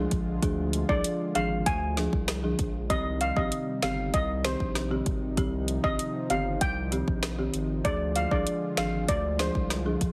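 Sultry and hypnotic, this dancehall excerpt moves at 97 BPM in C minor, with a woody, rustic folk marimba, a thick saturated sub bass and a mellow, detuned analog pad with chorus and sidechain pumping sitting in the background from the start. An up-front electronic afro-pop kit with a deep kick, metallic hats, rim clicks and finger snaps enters at 0.1 seconds, and a bright, shimmering steel pan carries the melody with slapback echo from 0.9 to 9.5 seconds. Chords shift from Ddim to Cm and back, and the mix has light digital ambience and a heavily compressed, radio-like sound.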